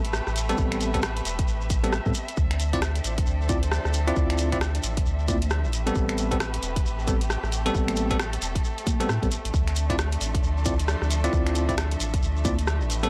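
UK garage in a two-step groove at 134 BPM with a swung 16th feel, this soulful, moody D minor excerpt moves between Am9 and Dm9 as a saturated, up-front sub bass and a punchy, tape-warm electronic kick entering at 0.6 seconds anchor congas, finger snaps, hi-hat, rim click and a grainy shekere, while bell-like tine electric piano stabs with tape echo arrive at 0.5 seconds over a distant, lush violin section pumping with sidechain and a very quiet, breathy pad, all set in a dry, gritty digital ambience.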